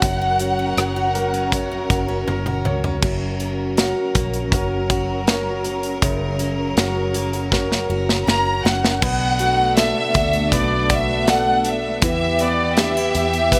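A straight 4/4 pulse at 80 BPM drives this heartbroken pop ballad, cut from a longer piece and tuned to A4 = 444 Hz, with an acoustic studio drum kit up front: punchy kick, medium-tuned snare, rim click, hi-hat, toms and crash, its top rolled off, plus two drum fills along the way. Beneath it, a vintage fingered electric bass sounds dark, round and foam-muted, while a warm grand piano plays smooth, vintage-toned accompaniment and a picked steel-string acoustic guitar adds arpeggios from the background. A studio string section holds sustained chords with even, bowed vibrato. The lush violin section carries the emotional melody, sounding briefly at the opening and returning at 8.3 seconds. The harmony moves from F# to Bm7 at 9.0 seconds and then to Em at 12.0 seconds, with light reverb and a small room ambience around the ensemble.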